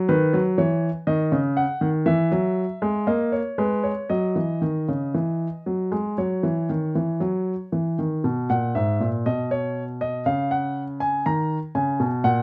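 A solo grand piano opens this short cut from a longer baroque-style two-part invention, its classical writing carrying a joyful, elegant mood at an unhurried pace in straight 4/4. The piano sits up front with an intimate, natural tone and audible action noise, and light reverb and a dark production frame it. Around 8.2 seconds the music moves into a new section, with harmony shifting from B/D# and C#m/E toward B and C# before the cut ends at 12.4 seconds.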